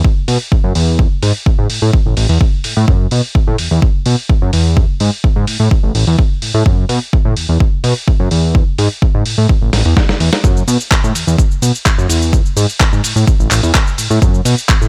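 An overdriven, punchy electronic kick and a fat, sawtooth analog bass open this filtered disco house excerpt together, both sitting up front in a fairly dry mix. The bass is thick and detuned, with a fast attack and a decaying tail, and it pumps through sidechain compression while a low-pass filter softens its top end. At 0.3 seconds a dusty, sampler-style soul kit joins with handclaps, hi-hat, shaker and a medium-tuned snare, its gritty, compressed hits set in a small room and its hats and percussion also pumping. The kick carries the same small room ambience, and the groove stays straight and steady in four, with a nostalgic, funky mood. A drum fill from 9.7 to 10.4 seconds breaks the pattern briefly before the loop rolls on to the cut.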